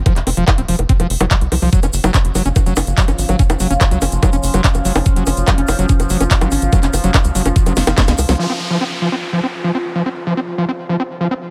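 An intense, psychedelic trance excerpt opens with a tight, punchy sequencer bass and an up-front knocking electronic kick driving a straight 4/4 groove, joined by a squelchy, screaming acid riff drenched in distortion, chorus, delay and sidechain pumping, a filtered electronic kit with a cracking snare, metallic hats, bongos and handclaps, a grainy tube shaker in the background, a deep, detuned ambient pad and a phased drone of moving overtones, before a drum fill from 7.8 seconds and a band accent at 8.3 seconds hand over to the acid line, drone and pad as an electronic downlifter falls away through to 11.5 seconds.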